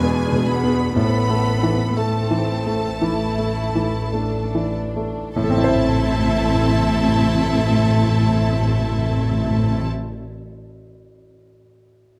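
A rubato 4/4 pulse at 48-67 BPM, slowing through the first 5.4 seconds, carries this passionate, brooding romantic classical movement for piano and orchestra in A minor: a clear, vintage-toned grand piano sings the melody until 12.2 s, alongside a rich upper violin section that also carries the melody, lush second violins, focused violas, a cello section sitting in the background, smooth double basses and close timpani struck with medium mallets, all of which stop at 9.9 s, as the harmony moves from E7 to Am in a moderate recital-hall reverb captured by close, detailed microphones.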